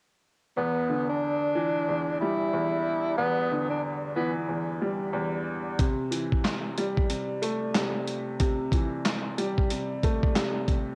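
A breathy, mellow tenor saxophone with vibrato, subtone and scooped notes sings a brief jazz-style solo until 4.3 seconds over a woody upright piano's Em7 chord, and at 5.8 seconds the harmony moves to C6 as a dusty, compressed sampler-style kit with a thumpy kick, medium-tuned snare, hi-hat and handclaps brings in a gritty, reflective boom-bap hip-hop groove, all bathed in spring reverb and the tape-tinged character of a home cassette recording cut from a longer piece.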